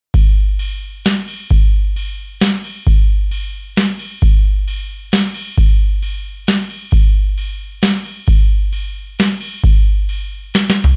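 A booming analog drum machine sits up front from the first moment, its deep kick, crisp snare, ride cymbal and toms carrying a dusty, wistful rock groove in a straight 3/4 at 133 BPM with a tape-warm character and moderate studio reverb, before a drum fill at 10.5 seconds closes this short cut from a longer piece.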